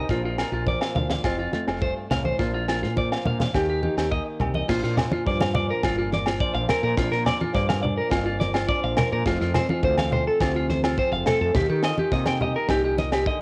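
Highlife guitar band music in Bb major at 105 BPM, carefree and danceable, moving in a straight 4/4 through a short cut from a longer piece. A clean, twangy electric guitar sits up front playing arpeggios, its tone carrying cassette tape color and tape echo, while a fingerpicked flamenco guitar supplies accompaniment with audible finger squeak and its own cassette grain. A woody fretless electric bass, round and punchy with a hollow-body character, anchors the low end from F1 to Eb3. A tight funk drum kit brings a high-tuned snare, tight kick and bright crash cymbal, joined by ringing agogo bells and low-tuned congas played with soft hands. The chords circle Bb, F and Eb, and the home cassette recording places the band in a small room with light reverb.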